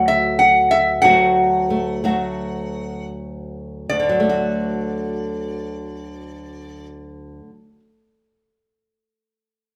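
Acoustic folk for a duo or small band, warm and gentle in mood, in D major and 4/4 with a straight feel, moving at roughly 74 to 97 BPM, in a brief excerpt cut from a longer piece. A lap resonator guitar carries the melody between D5 and F#5, its slide tone mellow yet metallic and nasal, played with fingerpicks and sitting up front until about 6.9 seconds. Beneath it, a fingerpicked nylon-string guitar supplies the accompaniment from D2 to F#4, sounding bright and small with fresh strings, also up front and continuing to 7.8 seconds. The music opens on a D chord, and the tempo slows down through the opening section, which gives way to a second section at 3.9 seconds. The players perform live together in one room, and a moderate studio reverb adds a sense of space around them.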